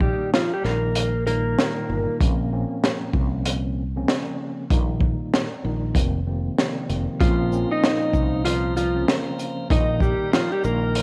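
A crunchy breakbeat kit sits up front in this gritty, tough boom-bap hip-hop excerpt, its punchy kick, high-tuned snare, hi-hat and shaker saturated and dark with a rolled-off top and the close feel of a small room, all moving with a swung sixteenth-note feel. Beneath it, a fretless electric bass gives a round, direct low end. A mellow tine electric piano carries the accompaniment through built-in speakers, filtered and softened by cassette tape. A clean, compressed electric guitar, picked and recorded direct, states the melody up front, breaking off at 2.2 seconds and returning at 7.2 seconds. At that return a tonewheel organ joins with piping, scooped sustained chords, key click and a stopped rotary speaker, also filtered and taped, over a home-cassette ambience.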